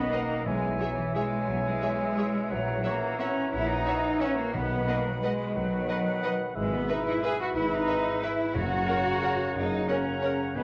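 Up front, a clear, lush cello section carries the bass of this festive, elegant classical excerpt in 3/4 at 178 BPM with an uneven, rubato feel, while a warm, expressive violin melody sits in the background over a very quiet second violin line, rich violas and distant double basses, joined by a vintage-tinged clarinet, a background oboe, an airy flute group, a mellow bassoon, a dark, very quiet horn section holding chords, ringing fingerpicked harp arpeggios and round soft-mallet timpani strokes at 0.5, 4.5 and 8.6 seconds, all set in a moderate concert hall reverb and colored by worn, warbly cassette-tape pitch drift.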